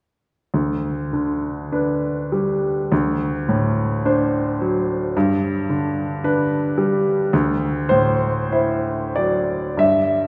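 Rubato phrasing in 4/4 gives this short slice of a romantic classical nocturne its nostalgic, dreamy drift, as a clear, up-front baby grand piano plays alone from 0.5 to 10.3 seconds, moving through G/D, D7, G and D9 and blooming into a wet church reverb.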